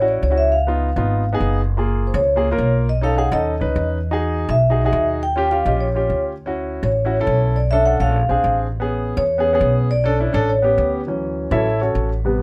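A lively, sophisticated jazz passage opens with soft-mallet vibraphone carrying the melody in a mellow, airy ring with slow motor vibrato, over concert grand piano accompaniment and a woody, thumpy pizzicato upright bass on gut strings. The piano sounds intimate and natural, with audible action noise and deep bass. The close, dry sound keeps both piano and bass up front as the harmony moves through rich major-ninth and seventh chords. The vibraphone stops at 10.9 seconds, and the piano takes a solo from 11.1 seconds.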